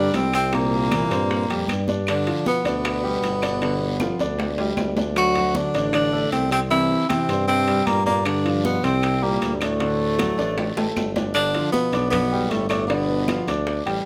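A subtoned tenor saxophone carries the melody up front from the start, shadowed in the background by a breathy trombone with scooped notes, over an intimate grand piano with audible action noise and a punchy tuba bass, in a lively, sophisticated Afro-Cuban jazz groove at 155 BPM in G mixolydian. Percussion joins at 0.1 seconds: ringing, high-tuned congas and tight bongos played with soft hands sit very quietly, saturated metal-shell timbales stay in the background, and a raspy guiro adds texture, with woody claves entering in the background at 0.3 seconds. Drum fills mark 4.0 and 10.4 seconds as the chords move among C7, G7 and D7 before the opening section returns at 11.3 seconds in a moderate studio reverb, the whole cut from a longer piece.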